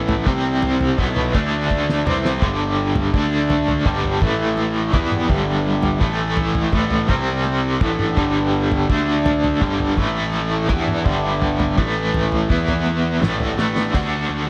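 Psychedelic rock at 83 BPM in a straight 4/4, this trippy, dark passage cut from a longer piece sits in a dreamy mix soaked in plate reverb, with a biting, double-tracked overdriven guitar up front playing a riff through tremolo over a fuzz-laden picked electric bass. A cloth-damped, thuddy drum kit with a fat snare, tight kick and rolled-off top adds fills at 1.7 and 13.6 seconds, while very quiet, high-tuned congas with soft hands tap beneath. A reedy, breathing pedal harmonium holds mellow sustained chords in the background as the harmony moves through suspended, added-ninth and power chords such as Asus2, Gadd9 and D5.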